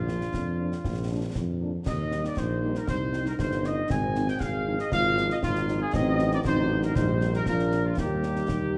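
A warm tuba with light vibrato and a soft attack sits up front, anchoring this spirited, rousing military-style march for wind band in Eb major at 118 BPM in a straight 2/4, while a roomy trumpet section carries the melody and a euphonium adds a second line in the background. A mellow, tight French horn section fills out the accompaniment from 0.1 seconds, joined by close, dry concert snare, bass drum and clash cymbals with dark cymbal tone. The harmony moves from Bb through Cm and an Adim7 before settling on Eb at 8.0 seconds, all set in a scoring-stage reverb with a dark production, in this short cut from a longer piece.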